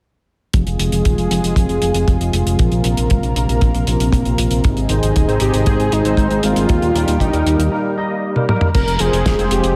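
A straight 4/4 pulse at 117 BPM drives this melodramatic, bittersweet italo disco piece in F minor, cut from a longer track. A dry, tight kick and a damped 70s drum kit with a fat snare, hi-hat, toms and crash anchor the groove from 0.5 seconds, with a break at 7.7 seconds and a drum fill just before the change at 8.7 seconds. A fat, detuned sawtooth analog bass holds the low end beneath a lush, warbling unison pad of vintage sawtooth and square-wave tones, its sustained chords bathed in chorus as they move through Fm, Bbsus2, Ab and Eb before returning to Fm. At 4.9 seconds a bright, barky tine electric piano adds stabs coloured by ensemble chorus and tape echo, and soon after a bold, thick unison lead with vibrato sings a melody through a diffuse ambient delay. A moderate hall reverb soaks the whole mix in a dreamy haze.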